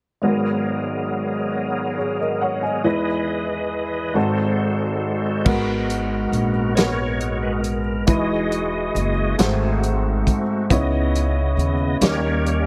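Slow gospel in G# minor, moving at 46 BPM in a straight 6/8 with a solemn, fervent mood, taken from a longer piece. A clear upright piano with audible action noise and long sustain plays accompaniment from 0.2 seconds, joined throughout by a reedy tonewheel organ holding sustained chords through a fast rotary speaker and chorus vibrato. At 5.5 seconds the organ takes a solo as a pizzicato upright bass with thumpy gut strings and a soul drum kit with dark cymbals, a medium-tuned snare and a tight kick enter together. The harmony moves through rich extended chords such as G#m9, Emaj7 and G#7b9, reaching C#m9 and D#7 near the close. Light reverb and small room ambience give the up-front parts an intimate, natural setting.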